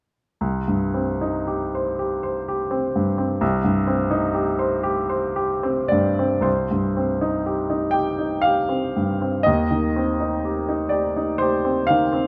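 Melancholic and yearning, this brief fragment of a romantic classical nocturne in 3/4 unfolds with free, rubato timing on a clear, present baby grand piano placed up front in a moderate large-studio reverb, spanning C2 to G5 as a second section begins at 6.5 seconds and the C minor harmony shifts to Cm/Eb near 9.5 seconds before the piece is cut off at 12.3 seconds.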